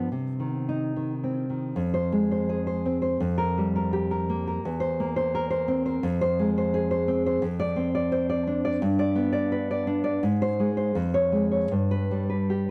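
Melancholic and wistful, this short passage from a longer romantic piece for solo classical guitar moves in F minor at a rubato pace of about 71-87 BPM in 2/4. A single nylon-string guitar carries everything, its full-bodied, thumb-plucked tone sitting up front and ranging from E2 to D5. A tape echo trails the notes, and a moderate studio reverb adds a modest sense of room. After a brief opening on C minor, the music settles into F minor at 1.8 seconds and drifts through suspended and seventh chords such as Fsus24, C7/E and Dm7/F. Toward the close it shifts to G, Ab and Db/F before landing on G again at 11.7 seconds, and the passage ends at 12.7 seconds.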